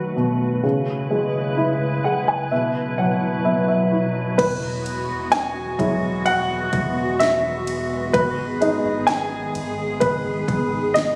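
A woody, slightly detuned upright piano opens this tender, emotional pop ballad excerpt at 64 BPM in E major, adding a fill from 1.6 seconds before taking a solo from 4.4 seconds, while a glassy, ethereal FM pad with ensemble chorus and its own reverb holds slow-blooming chords beneath it. At 4.4 seconds a deep sine sub bass and a punchy, overdriven electronic house kit with cracking snare, crash and ride join as the harmony moves from B7 and C#m7 through Bsus4 to Eadd9 and G#m. The whole sits in a light club reverb with compression, captured on a phone in the room.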